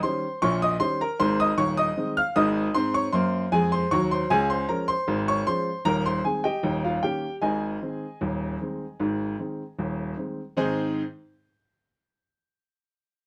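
A clear, woody upright piano plays alone in this cheerful, lively ragtime passage in 2/4 with a straight feel, its range reaching from Eb1 to F6 as it moves through a dominant-to-tonic progression. The piano sits up front with a natural tone, caught by close, detailed microphones in a moderate club reverb. Cut from a longer piece, it shifts into a new section at 10.6 seconds, just before the piano stops at 11.0 seconds.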